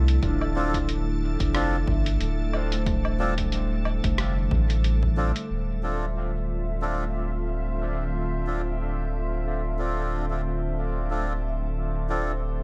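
Lightly reverberant and spacious, this deep ambient dub fragment sets a round, up-front sub bass under a bright, organ-like chorused pad, ringing soft-mallet vibraphone arpeggios and reedy, nasal melodica stabs, both with dub echo, while a muffled sampler-style kit of hi-hat, rim click and woodblock and a punchy, overdriven electronic kick in the background play until about 5.5 s and 5.1 s respectively; at 5.5 s a filter sweep begins on the pad, and a glassy, drifting harmonics texture joins at 6.4 s.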